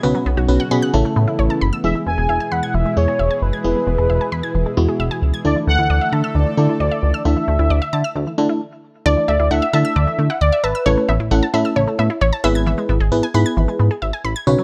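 Synth-pop at 133 BPM in a cool, driving 4/4, cut from a longer piece, where a dark, up-front chorused synth bass and a glassy, bell-like FM electric piano run throughout beside a juicy, squelchy resonant blip pluck playing arpeggios through chorus and delay, while a thick unison pad holds sustained chords until a brief stop at 8.6 seconds, a velvety, vibrato-laden synth lead carries the melody from 1.8 seconds, and a punchy unison pluck adds a second line from 9.1 seconds, all in light reverb over chords moving from Bsus2 through Aadd9, E and Dsus2 to E/G#.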